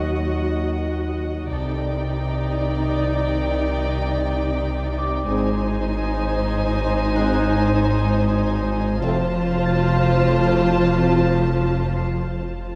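Muted, con sordino violin sections carry a veiled melody and a second line over a dark, tense suspense score in 3/4 at 95 BPM, joined by viola accompaniment with a soft attack and lush cello and distant double bass holding the bass in the background. A mellow French horn section sustains chords until 11.2 s, while a deep, clean sine sub bass drones beneath and a thumb-plucked concert harp rings in the background, adding high texture. Chords move from Ebm through Cmadd9 and Ab to F, and the eerie ensemble sits in a moderate scoring stage reverb in this cut from a longer piece.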